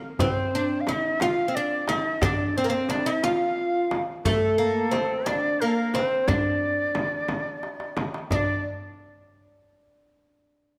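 From 0.2 s a woody, fretless oud carries the melody up front, joined by a breathy, reedy ney with vibrato on a higher second line, while a clay-shelled darbuka and a deep, large frame drum keep time underneath. This longing, hypnotic Arabic maqam ensemble piece is in D maqam bayati, moving at 59 BPM in a straight 6/8. A drum fill at 7.6 s leads toward a new passage, and the parts stop at 8.6 s within a moderate scoring-stage reverb that lingers beneath the close, detailed sound.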